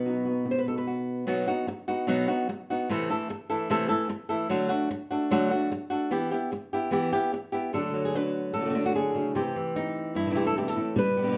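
A fingerpicked flamenco guitar carries the melody up front, its fresh strings ringing warmly as it moves between G2 and C5 across the whole 11.4 seconds. This brief cut from a longer flamenco piece runs at 148 BPM in a straight 4/4, with a passionate, dramatic mood. A second fingerpicked flamenco guitar sits lower in the mix, adding stabs from the start until 1.3 seconds and again from 7.7 seconds to the end, with audible finger squeak on its strings. The harmony moves from B through Am, D and Em before settling on D and a closing C6. Both guitars sound acoustic and warm, played live together in one room with a moderate large studio reverb that lends them an open, roomy air.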